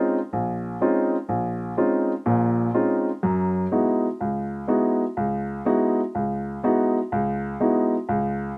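A lone upright piano opens this short cut from a longer jazz piece, its woody, natural tone sitting up front in the sound. The mood is spiritual and cool, moving at 124 BPM in 4/4 with a swung eighth-note feel. The harmony rests on an Eb13sus4 chord before shifting to Gb13sus4 at 3.2 seconds, voiced across a span from Bb1 up to Gb4. Long sustain lets each chord ring and hang in the air, framed by a light reverb in an open-air recording. The piano carries the whole passage alone until it ends at 8.5 seconds.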